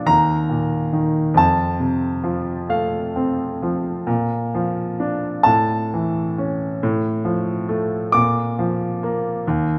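Calm and warm, this short cut from a longer classical piece features a clear, smooth grand piano with a vintage, up-front tone and short sustain, playing alone in Bb major at a slow 45 BPM in an uneven-beat 6/8 with free rubato, spanning Eb2 to D6 over chords moving from F to Bb, A, F/A and back to Bb by 8.1 seconds, all in light reverb and slightly tuned up at A4 = 441 Hz.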